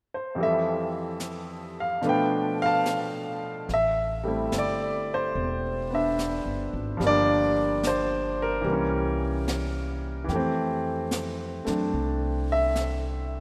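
A clear baby grand piano opens this intimate, melancholic jazz excerpt, cut from a longer piece, and sits up front with long sustain and audible action noise as it comps through chords such as Fmaj9, Bm7b5 and Am9. A jazz brush drum kit follows almost at once, its high-tuned snare and hi-hat set low in the balance and carrying a small-room acoustic character. The tempo is a slow 73 BPM in 4/4 with a swung eighth-note feel, centred on A minor. At 3.7 seconds a woody, pizzicato upright bass with steel strings joins low in its register as the harmony moves to Am9, then on through Gm7 and C7b9 before settling back on Fmaj9. A lush hall reverb with a long tail bathes the whole, while the rough home demo mix keeps the sound unpolished.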